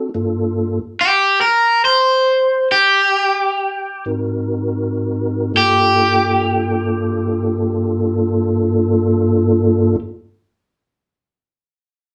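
Mournful and smoky, this slow minor blues in 12/8 drifts at 39-49 BPM in G minor, easing back in tempo over the first 5.5 seconds as the harmony moves from Gm7 to Ab7 and back. A mellow, flute-like tonewheel organ sits up front with sustained chords, its key click, chorus vibrato and fast rotary speaker giving a soft, shimmering bed. From 1.0 seconds a bright, overdriven hollow-body guitar carries a picked melody, all heard as a band playing live in one room with moderate studio reverb, cut from a longer piece.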